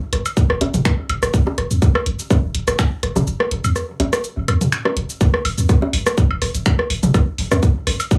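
Minimal techno with a hypnotic, clinical mood and a gentle swing on the 16ths, built around a tight, up-front electronic kick that enters at 0.4 seconds and a deep, punchy sine sub bass with a pitch-drop attack and sidechain pumping. A garage kit adds finger snaps, shaker and warm hi-hats, while an overdriven electronic percussion kit sits up front with bongos, rim clicks, toms and woodblock run through tape echo. A break arrives between 3.3 and 5.2 seconds, and the parts share a light reverb in this short cut from a longer piece.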